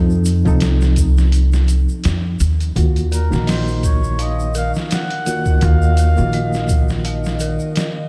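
Light room reverb frames this smoky, dark trip hop excerpt at 84 BPM with a swung 16th feel, moving from F7 to Ebmadd9. A compressed, pitched-down sampler drum kit with a thumpy kick sits up front beside a woody pizzicato upright bass. A warm egg shaker and a reedy, worn electric piano with overdrive, harmonic tremolo and tape echo play alongside them from the start, and a warbling lo-fi pad with chorus enters at 2.8 seconds. At 3.1 seconds a veiled cup-muted trumpet carries the melody through 12-bit sampler grit and tape echo, while an eerie, inharmonic detuned synth bell plays arpeggios in the background.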